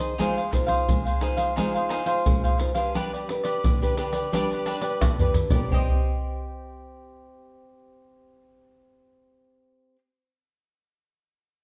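Samba and choro in C minor at 87 BPM, this brief passage cut from a longer piece carries a bittersweet, nostalgic mood. A crisp, picked cavaquinho up front and a fingerpicked classical nylon-string guitar, both with a warm acoustic tone, share the accompaniment, and the guitar lets a little finger squeak through. Tube shaker, pandeiro, tamborim and a deep surdo play with soft hands, sounding close and dry, before a drum fill at 5.0 s and their exit at 5.9 s. The harmony moves from Fm7/Ab to G, then settles on Cm as a second section begins at 5.7 s, leaving the two string instruments to carry on. A large studio reverb places the music further back in the room, giving it a spacious, wet glow.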